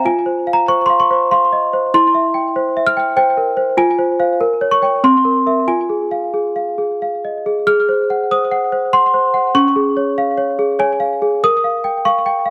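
A single F5 from a worn, slightly out-of-tune celesta opens this wistful, eerie classical lullaby, played solo and up front in a rubato 3/4 with bell-like, delicate tone, a touch of slapback echo and light reverb in a dry, close 1970s-style studio sound, its chords moving from F minor toward C7 before a new section begins at 7.7 s on Ab7 and drifts through Db to Gm7b5/Bb as the excerpt is cut off at 12.5 s.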